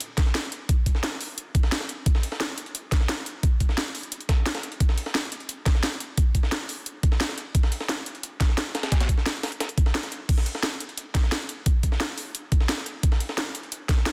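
This is a drum and bass track at 175 BPM in a straight 4/4, with a mechanical, futuristic mood, cut from a longer piece. A layered drum and bass kit plays from the very start, with a cracking snare, bright hi-hats and crash cymbal hits, overdriven and close in the mix. Beneath it, also from the opening, sits a sampler-style breakbeat kit whose gritty, compressed hi-hats and high-tuned snare are thinned by high-pass filtering. An electronic kick drum joins at 0.2 seconds. It has a knocking, overdriven sound, re-recorded in a small room and placed up front. A short break arrives at 9.9 seconds, and the whole passage carries light reverb inside a dense, heavily limited modern master.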